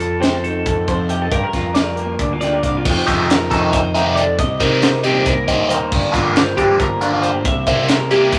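Intricate and wistful, this math rock and midwest emo passage, cut from a longer piece, drives along at 274 BPM in eighths in a straight 7/8, moving through chords such as F7, Gm7, F9 and Cm7. A slightly broken-up, lo-fi electric guitar through a small old amp carries the accompaniment, while a bright, twangy twelve-string electric guitar with phaser spins arpeggios above a dark, round fuzz fingered bass with overdrive and a crisp fusion kit with a high-tuned snare, punchy kick and pumping small-room sound. At 3.1 s a biting, double-tracked overdriven guitar with phaser enters up front with a riff, and the whole passage sits in a light reverb.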